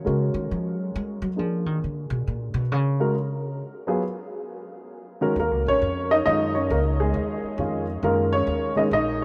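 A cool, swinging jazz excerpt in 3/4 at 135 BPM in Eb minor opens with a woody, pizzicato upright bass solo up front, running until 5.4 seconds over chords such as Gbmaj13/Db and Bb7. A dark, mellow baby grand piano carries the melody throughout, intimate and close, with audible action noise and short sustain. From 5.4 seconds the harmony moves through Ebm7, Db and Gb69, all set in a vast, echoing space with a huge, wet reverb.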